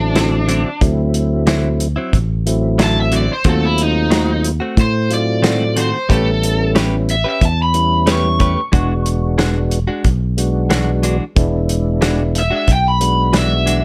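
A raw garage guitar with bright overdrive carries the melody from the start, over a mellow tonewheel organ turning through a slow rotary speaker with chorus vibrato, while a dark, round fingered bass sits up front. At 0.2 seconds a small-room soul drum kit with a tight kick and rolled-off top joins, along with clean, compressed stabs from a direct-recorded electric guitar, as the chords move through D9, D#dim7, A9 and E9. This gritty, swaggering straight-eighth soul blues, cut from a longer piece, sits in light reverb.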